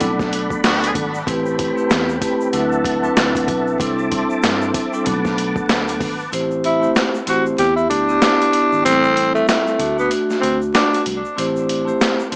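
A growling, raspy tenor saxophone carries the melody from 6.7 seconds in this dark, moody boom-bap hip-hop excerpt at 95 BPM in A dorian, over a gritty, pitched-down sampler drum kit with a thumpy kick and high-tuned snare (the kick muted after 6.3 seconds), ringing metallic vibraphone through cassette tape, a mellow tine electric piano bass, a lightly overdriven tonewheel organ with slow rotary swirl until 6.3 seconds, a brief clear trumpet section stab at 0.6 seconds, and a faint grainy egg shaker, all colored by vinyl crackle and a small-speaker sound.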